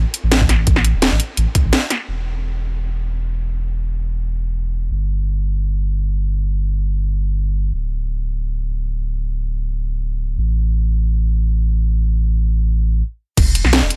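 Dreamy and lush, this liquid drum and bass passage, cut from a longer piece, floats in free time. A deep, round sine sub bass sits up front throughout, its fast attack giving way to long sustained low notes. Layered electronic drums open the passage, with a cracking snare, bright hats and crash cymbal pushed forward and overdriven, while a sampler-style kick, compressed, pitched up and gritty, adds a thumpy, tape-warm punch in a small-room ambience. The drums drop away by 2.0 seconds, leaving the bass to hold the long middle stretch alone. After a brief stop at 13.0 seconds, kick and kit return at 13.4 seconds in a dry mix.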